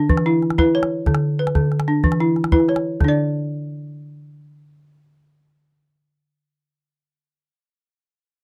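The rhythm moves in 12/8 at 124 BPM counted in dotted quarters, with a straight, hypnotic, flowing feel in this West African traditional string and xylophone music, cut from a longer piece. A balafon carries the music in arpeggios from D3 to D5, its woody, round tone struck with hard rubber mallets and sitting full and up front. A small, acoustic calabash adds close percussion from 0.1 seconds until it stops at 3.2 seconds, leaving the balafon alone until it ends at 6.5 seconds. The harmony moves through E5, Bm/D and back to E5 in the opening section, then gives way to unharmonised playing as a second section begins at 3.0 seconds. The sound is that of a close 1970s-style studio recording with little reverb, giving both instruments an intimate, dry presence.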